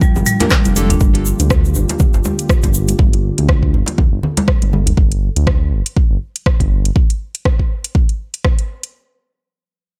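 An up-front, deep electronic kick anchors this short afro house excerpt, running at 121 BPM in G minor with a swung sixteenth-note feel and a spiritual, warm mood over a Gm7 chord. Beneath it sits a smooth, mellow sawtooth-and-triangle synth bass, also prominent and pumping against the kick, while a tape-touched afro-pop kit adds handclaps, metallic hi-hats, rim clicks and toms, both drum parts carrying studio reverb. Acoustic percussion fills the groove: a medium-tuned djembe struck with hard hands, ringing congas tucked close and dry in the background, and a grainy, bright egg shaker that drops out at 3.0 seconds. In the opening second, which serves as a drop, a dark marimba played with hard mallets spins arpeggios through digital delay, round detuned analog key stabs flicker briefly, and an expressive portamento lead with vibrato is barely audible. A warbling, vintage analog pad with chorus holds sustained chords in the background and undergoes a filter sweep from 1.0 seconds onward, with the kit carrying on to the end at 8.9 seconds.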